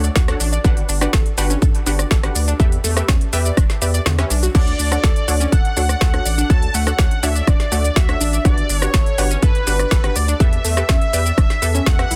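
Bright, detuned sawtooth pluck arpeggios open this euphoric, expansive progressive house excerpt over a thick, saturated sine sub bass and a deep house kit with a woody snare, smooth hats, rim click, shaker and crash, while a punchy, up-front electronic kick and lush pluck stabs join almost at once, the plucks and bass pumping to the sidechain and the plucks trailing dub echo. After the kick briefly drops out at 4.1 seconds, a bold, wave-folded unison lead with vibrato, lush chorus and dub echo enters at 4.5 seconds, carrying the melody over a Dmaj7, Gmaj7 and Em progression. The sound is dry, dense and heavily limited in a modern master.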